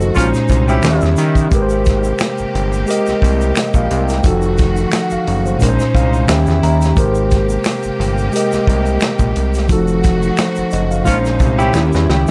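R&B with a neo-soul lean, this smooth, mellow excerpt sits at 88 BPM in Ab major with a lightly swung 16th feel, moving through Bbm11, Eb7b9, Abmaj9 and F7b9. A clean tine electric piano bathed in plate reverb carries the accompaniment and slips in a fill at 5.6 seconds, over a fat, detuned, filter-swept analog bass and a tight, roomy soul drum kit with finger snaps, hi-hat and a rolled-off top. Lush bowed strings hold close, focused chords, a tube shaker and snaps add quiet texture, and a smooth-topped jazz horn section punches brief stabs through tape echo at the start and again at 11.1 seconds, overlapping a closing drum fill that begins at 11.7 seconds.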